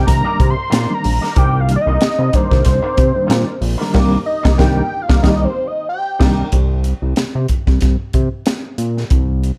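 A swung 16th-note funk groove at 93 BPM in C minor sets a hypnotic, sly mood, as a punchy, high-tuned fusion kit and a thick, detuned sawtooth bass hold the low end while a fat analog lead with tape echo and vibrato solos over Cm9 until 6.5 seconds, accompanied by an envelope-filtered twangy guitar with chorus, a reedy, slightly out-of-tune electric piano with fast tremolo stabbing underneath, and a band accent from 4.0 seconds, before bass and drums carry on alone over Bbsus2 in this dark, lightly reverberant excerpt cut from a longer piece.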